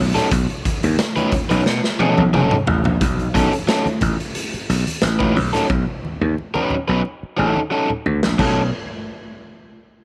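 A growly, overdriven slap bass opens this short, energetic funk excerpt in B mixolydian at 89 BPM, joined almost at once by a picked, compressed electric guitar, a punchy, saturated garage drum kit in a bright stone room that rolls through fills from 1.7 to 3.0 seconds and again from 5.7 to 8.4 seconds, and soft-handed, low-tuned congas tucked in the background, all opening on a B9 chord under light studio reverb.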